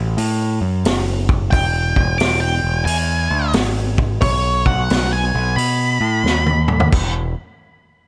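A swung 4/4 groove at 89 BPM drives this gritty blues rock and southern rock excerpt, which is cut from a longer piece. A growling picked electric bass opens at 0.0 seconds, overdriven, bright and punchy, ranging from E1 to B2, with a vintage acoustic drum kit joining almost at once. The kit has a punchy kick, a high-tuned snare, toms and dark cymbals, and it sits mid-forward with a rolled-off top. At 1.5 seconds an octave-fuzz lead guitar takes the melody as a solo, its dark, distorted tone carrying slapback echo as it moves between C#5 and D6. The harmony moves from F#m to E and then B, and a drum fill at 6.2 seconds leads into a closing passage where the chords drop out. The bass, drums and guitar all sit up front with light studio reverb, giving the trio a driving, close sound.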